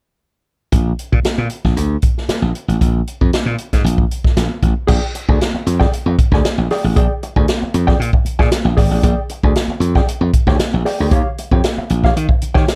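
This is a funky, energetic funk groove at 116 BPM in straight 4/4, centred on B-flat mixolydian and cut from a longer piece. Slap bass and an acoustic drum kit open together at 0.7 s before any chord is set. The bass sits up front with a bright, punchy, amped tone. The kit has a roomy studio character, with a boomy kick, medium-tuned snare, hi-hat and crash cymbal, and a warm sound with a rolled-off top. At 4.9 s a dark, clean, fingered electric guitar enters, compressed and placed lower in the mix, over a Bb6 chord that shifts to Eb9 at 11.1 s. The overall sound is dry, with little reverb.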